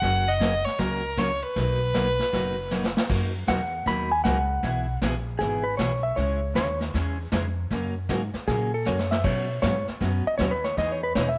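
A moderate spring reverb and small-room ambience frame this playful, cheerful western swing excerpt in B major at 156 BPM with a swung feel, where a clear, biting fiddle carries the melody until 3.0 s before a dark, compressed lap steel guitar, played with fingerpicks, enters at 3.5 s as a second line, all over a bright dreadnought acoustic guitar, a woody, thumpy pizzicato upright bass and a distant vintage brush drum kit whose fills at 2.7 and 8.9 s punctuate chords moving from F# through Bmaj7 and C#m to Emaj7.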